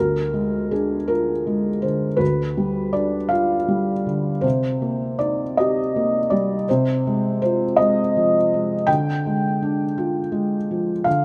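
A rubato 6/8 sway at 54 beats per minute carries this melancholic, intimate neoclassical minimalist piece, where a soft, felt-muted upright piano plays alone, up front and mellow in light reverb, from D2 to G5 through a brief cycle of Ddim, G7/D, Cm7 and Fm7/C before returning to Ddim at 8.9 seconds, in a fragment cut from a longer work tuned to A4 = 438 Hz.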